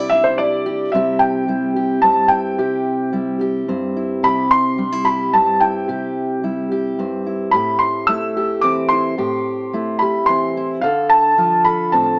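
Acoustic folk for a duo or small band, this short excerpt drifts along in a peaceful 3/4 at 109 BPM in C major. A felt-muted upright piano carries the melody across a range of C5 to E6, its tone soft, mellow and intimate, with the thin felt giving it a hushed, close quality. Beneath it, a fingerpicked steel-string acoustic guitar supplies the accompaniment from G2 to A4, sounding dark and woody, like old strings. Both parts sit up front and play together from start to finish. The harmony moves from Cadd9 to C, then to Am7 at 7.5 seconds and Dm7 at 10.8 seconds. A light reverb and a small-speaker sound lend the recording a modest, homely character.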